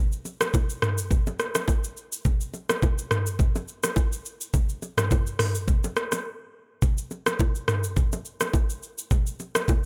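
Mellow and sultry, this afrobeats groove moves at 105 BPM in 4/4 with a lightly swung sixteenth-note feel, cut from a longer piece. An electronic, produced afro-pop drum kit enters at 0.1 seconds, sitting up front with a knocking kick, metallic hi-hats, rim clicks, shaker and toms that sound re-recorded in a large room, while bright acoustic bongos and congas join at 0.3 seconds, heard close and dry. A brief break at 6.3 seconds gives way to the groove returning for the final stretch, all set in a digital ambience.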